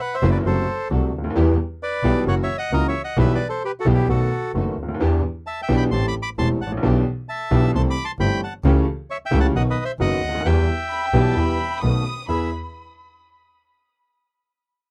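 A reedy bandoneon opens this tense, sultry tango excerpt in E minor at 132 BPM, carrying the melody with a rubato feel as a brilliant, woody upright piano and a biting, earthy bowed double bass join up front almost at once, while a distant, very quiet chamber string section adds rich stabs. The harmony moves through diminished and seventh chords before resolving to E, and at 10.9 s a sul tasto violin section enters with a soft-attacked, intimate second line touched by tape echo. The sound is dry and close, in the manner of a 1970s studio recording.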